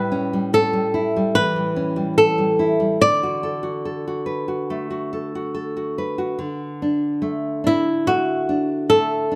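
A fingerpicked flamenco guitar carries the melody from the first moment, its finger squeaks caught by close, detailed microphones, while a full-bodied nylon-string guitar accompanies in a deep classical style; both sit up front in light reverb. This tender, innocent children's lullaby moves in a free-flowing rubato, passing from A7 to D6 before settling on a plain D chord as a new section begins at 6.4 s. The passage is a short portion of a longer piece, ending at 9.4 s.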